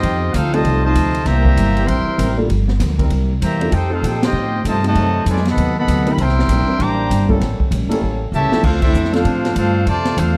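A hard-swinging 4/4 groove at 195 BPM drives this energetic big-band jazz excerpt, anchored by a woody, thumpy upright bass up front and a punchy, polished drum kit with dark cymbals, a short fill, and full-band accents at 4.2 and 8.8 seconds. Brilliant, tight trumpets with light vibrato carry the melody over a warm trombone second line, while a mellow concert grand piano enters at 0.5 seconds and a clear trombone section holds sustained chords in the background. A very quiet, full-bodied picked acoustic guitar fills out the accompaniment, and light reverb rounds out the dark, warm production.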